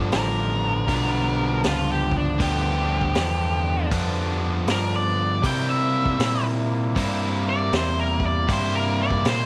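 A swung eighth-note shuffle at 79 BPM in 4/4 drives this short blues rock and southern rock passage, which has a driving, swaggering power-trio attitude. An acoustic vintage drum kit, recorded in a studio room, sets the groove with hi-hat, a punchy kick and a high-tuned snare; its sound is warm and mid-forward with a rolled-off top. Up front, a crunchy, double-tracked rhythm guitar plays a bright overdriven riff, while a growly, amped electric bass, picked and overdriven, holds down the low end. Over them an octave-fuzz lead guitar solos throughout, its dark, distorted tone trailed by slapback echo. The harmony rests on G7 before moving to C7 at 5.4 seconds, and studio reverb gives the trio a shared sense of space.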